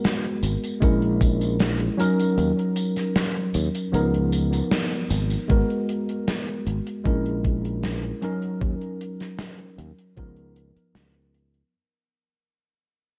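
Nostalgic and woozy, this vaporwave fragment drifts along at 77 BPM in a straight 4/4, centred on G# minor and cut from a longer piece. A worn, slightly out-of-tune tine electric piano carries the chords through a combo amp, coloured by analog chorus, tape echo and vintage 12-bit sampler grit, cycling through G#m9, A#m7b5, D#m7 and C#13 twice. Beneath it, a growly, bright fretless electric bass with tube saturation holds the low end from 0.4 seconds, while a gated 80s kit of hi-hat, medium-tuned snare and tambourine sounds airy and polished in its bright stone room. A thumpy, tape-warm electronic kick joins at 0.8 seconds, drops out from 2.4 to 5.5 seconds, and the band hits a shared accent just before the second pass of the progression. From 5.5 seconds the whole piece fades out, leaving an up-front sound wrapped in light small-room ambience.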